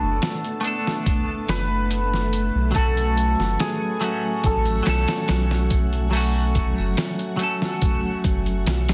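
A straight 4/4 groove from a pitched-down, gritty, overdriven sampler-style drum kit with a thumpy kick and medium-tuned snare sits up front, joined by a round, deep dub sub bass, while maracas and triangle ring close and dry in the background of this melancholic, dark trip hop fragment cut from a longer piece. A clean, hollow-body semi-hollow electric guitar carries the accompaniment with harmonic tremolo, vintage 12-bit sampler grit and tape echo, beneath a shimmering hammered dulcimer melody also touched by tape echo. A mellow string machine cello patch with ensemble chorus holds evolving sustained chords behind it all, moving from Bm7 to F#m at 2.8 seconds, in a dry, dense and heavily limited mix.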